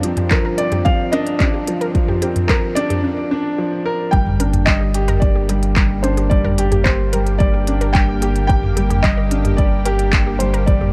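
An up-front grand piano riff with delay leads this intimate, cinematic piano and strings electronica excerpt at 110 BPM in 4/4, joined from 0.3 seconds by a soft, muted upright piano melody with delay, a lush, detuned pad holding a Bbadd9/G chord with chorus and sidechain pumping, very quiet bright pluck arpeggios, crisp hats, handclaps and toms from a tape-toned electronic kit, and a deep layered kick, while a round sine sub bass with tube saturation arrives on the drop at 4.1 seconds after a brief break, in a dark, warm production with light digital reverb.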